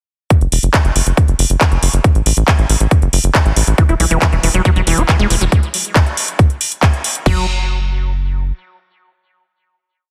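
A tight electronic kick drum thumps out a four-on-the-floor pulse from 0.3 seconds, joined by a programmed kit of metallic hats, handclaps on the backbeat and crash cymbal, all sitting up front in this intense, alien psychedelic trance piece at 138 BPM in 4/4. Almost at once a punchy sawtooth and square-wave sequencer bass enters low, rolling in driving sixteenth notes with a plucked filter and a touch of tube saturation. At 3.8 seconds a squelchy, resonant acid line appears above it, sliding and accenting through a 16-step pattern with chorus, delay and sidechain pumping. The harmony moves from a rootless Esus4 to a bare E5 as the acid part arrives. The drums stop at 7.3 seconds, and the bass rings out as a final note until about 8.5 seconds, in a dense, heavily limited mix with light reverb.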